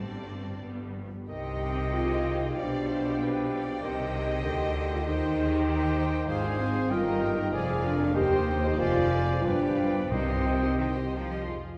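Classical-period symphonic music in C minor, restless and stormy at a rubato 85-99 BPM in 2/4, this excerpt from a longer movement sets rich, vibrato-laden violin and viola sections in the background above a bright cello section and an up-front, intense double bass section, with a dark, distant French horn section holding chords, oboe, silver flute, clarinet and mellow bassoon entering at 1.3 s, quiet calf-headed timpani arriving at 10.1 s on the return to C minor, and the whole ensemble heard from further back in a reverberant concert hall.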